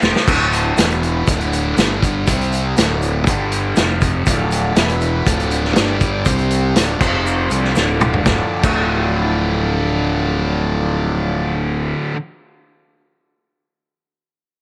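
A straight 4/4 groove drives this trippy, dark psychedelic rock excerpt. A gritty vintage drum kit, with dark cymbals and a tight kick, opens with a fill alongside a very quiet, grainy tube shaker, a bright, double-tracked fuzz guitar riff run through phaser, and a fuzzed, overdriven fingered electric bass. A buzzy overdriven combo organ slips in behind on sustained chords at 4.3 seconds, and the drums and shaker stop at 8.8 seconds, leaving guitar, bass and organ in light small-room reverb.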